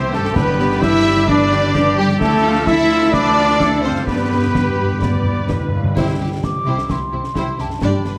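Soaring and adventurous, this heroic film-score passage at 130 BPM in C major sets a smooth, warm violin melody over lush strings (a dark second violin section, rich violas, cellos and woody double basses), with a hollow flute, a clear oboe, roomy French horn chords, trumpet stabs, a ringing fingerpicked harp, bright-cymbal concert percussion and round timpani that fill from 4.1 to 6.0 seconds before the music moves to C, all within a moderate scoring-stage reverb.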